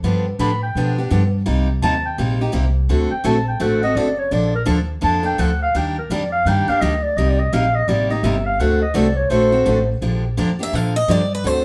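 A swung 4/4 pulse drives this bittersweet, virtuosic slice of acoustic string swing, cut from a longer performance, with a woody, thumpy pizzicato upright bass on gut strings sitting up front beside a full-bodied, picked dreadnought steel-string guitar playing the accompaniment throughout. The dark clarinet enters at 0.4 s and takes the solo, its subtone and vibrato carrying a jazz phrasing that sounds distant and roomy. The chords move through dominant and minor-seventh changes toward major-seventh colours before settling on a minor seventh. After the clarinet drops out at 9.9 s, a bright, boxy swing-style guitar with fresh strings picks up the melody at 10.6 s. The band plays live in one room, and a wet studio reverb lends the mix a touch of space.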